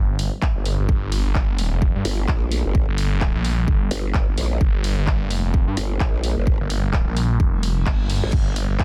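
A dense, heavily limited digital master carries this bouncy, aggressive bass house excerpt, where a swirling, sidechain-pumped phased detuned saw bass and a punchy, up-front electronic kick join a swung house drum kit of handclaps, crash cymbal and bright hi-hats over a deep, moody analog pad in the background, before a growling, wobbling overdriven growl bass enters at 2.1 seconds and a faint reverse cymbal appears at 7.6 seconds.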